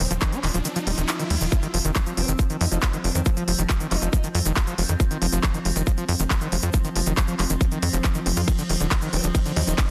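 A dense, heavily limited modern master set in a digital ambience opens this short cut from a longer psychedelic trance piece, with a psychedelic, alien mood and a straight 4/4 pulse. An evolving, morphing wavetable pad sustains chords in the background, colored by chorus, phaser, built-in reverb and sidechain pumping, while a squelchy, gritty acid bass drives a distorted, resonant riff through delay. Underneath, a tight, punchy sequencer bass with a filter pluck sits up front beside a layered, tight electronic kick. A techno kit of handclaps, smooth hi-hat and ride cymbal, re-recorded in a small room, joins a grainy, close egg shaker, while a riser sounds in the background over the opening 1.5 seconds as the kick drops out before the drop lands. Around 2.2 seconds a formant-sweep wobble bass slips in as a faint second line, high-pass filtered and treated with chorus and tape echo, returning briefly near the end after the harmony has shifted from F5 to Ebmaj7sus2.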